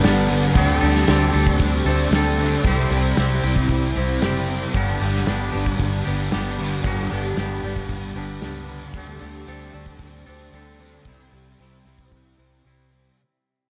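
Wistful and blissful, this shoegaze and dream pop rock fragment fades out from its opening as a dark, up-front fuzz guitar riff and a clean, twangy electric guitar riff with reverse reverb ride over a round, foam-muted electric bass and a loose indie drum kit in a pumping small room, while a shimmering, octave-doubled twelve-string acoustic guitar picks arpeggios with finger squeak in the background, all cast in a concert hall reverb.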